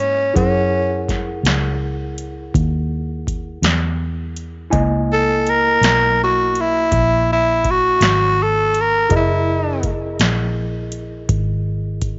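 Slow blues in 12/8 at 55 BPM, laid-back and swaggering, resting on a single F#13 chord in F# mixolydian for this short excerpt cut from a longer piece. A growling tenor saxophone carries the melody up front, breathy and raspy with a soft attack and a gritty jazz edge, soloing over the band from the start until 9.9 seconds. Beneath it, a worn, slightly out-of-tune tine electric piano sits low in the mix, lightly overdriven and heard through its built-in speakers. A vintage muted fingered electric bass, dark, round and amped with a foam-muted thud, stays up front in the low register, while an analog electro drum machine supplies a deep kick, punchy snare and metallic hi-hats with a tape-warm tone, re-recorded in a large room. The overall sound is dry, with little reverb and a top end that stops at 7.6 kHz, giving the track a dusky, close feel.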